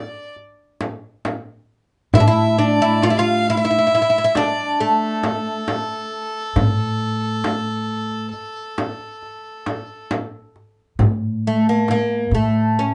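A mellow, woody oud carries the melody up front in this soulful, hypnotic Arabic maqam ensemble excerpt in A maqam hijaz, moving at 135 BPM in a straight 10/8. A clear, bowed violin with light vibrato traces an earthy second line until 10.1 s, while a crisp, metal-shelled darbuka sits in the background beside a warm, up-front frame drum. A growly pizzicato upright bass on steel strings joins at 2.1 s, all within a moderate studio ambience.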